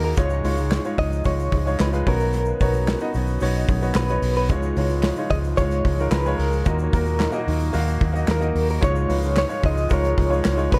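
A straight 4/4 groove from a loose indie drum kit with a tight kick, medium-tuned snare, hi-hat and handclaps, all touched by dub echo and a pumping room sound, drives this anthemic, hopeful piano-driven pop excerpt, where a polished baby grand piano, also with dub echo, carries the chords, a bright, compressed clean electric guitar sings the tremolo-laden melody, a very quiet fingerpicked jumbo acoustic guitar plays a full-bodied riff, a round, foam-muted vintage bass sits up front, a grainy tube shaker adds faint texture, and a shimmering retro pulse-width pad fades in with sustained chords at 4.5 seconds, all within a light, echo-heavy small room ambience.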